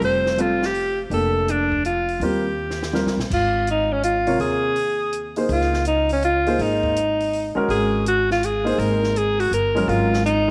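Opening together, a clear, up-front alto saxophone with light vibrato, subtone and scooped notes carries the melody over a warm baby grand piano, a woody pizzicato upright bass and a dry cocktail drum kit with dark cymbals and a punchy kick in this spiritual, hypnotic modal jazz excerpt at 164 BPM in a swung 3/4, where a drum fill from 2.6 to 3.3 s leads the harmony from F major into Ab mixolydian, the ensemble heard inside a moderate echo-chamber reverb.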